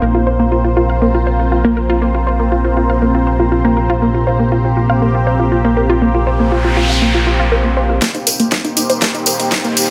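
A dark, melancholic melodic techno excerpt at 120 BPM opens on a Bbsus2 chord: a lush, detuned unison pad with chorus and phaser, a punchy sawtooth pluck playing arpeggios through digital delay, a fat, saturated analog bass up front, and a deep, moody ambient pad with its own reverb, all pumping with sidechain. A noise sweep arrives at 6.3 seconds, and at 8.0 seconds the harmony shifts to Cm7 as the bass drops out and a build-up begins, with a filter sweep on the arpeggio and a riser. An overdriven deep house kit with a fat snare and hi-hats drives a drum fill up front, joined by a background electronic kick and a jingly, bright tambourine, all in a moderate digital room with a faint mains hum.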